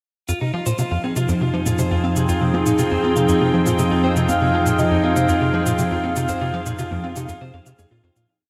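Ambient, sequencer-driven space music at 120 BPM in 4/4 and F minor, mysterious and cosmic, opening on an Fm7 as a tight, punchy sawtooth sequencer bass drives an 8-step pattern with ensemble chorus and tape echo, joined by a sustained analog drone on F2, a slightly broken-up picked electric guitar whose 9-step arpeggio loop drifts against the bar through tape echo, and a light, tape-warm pulse of shaker and high conga. From 1.0 s an evolving, warbling wavetable pad sits up front with slowly shifting sustained chords, and at 4.3 s a breathy, flute-like synth lead with vibrato and lush chorus sings a free melody between Eb5 and F5. The dreamy mix is soaked in a 2.5-second hall reverb and fades out from 5.6 s to the end of this short whole piece.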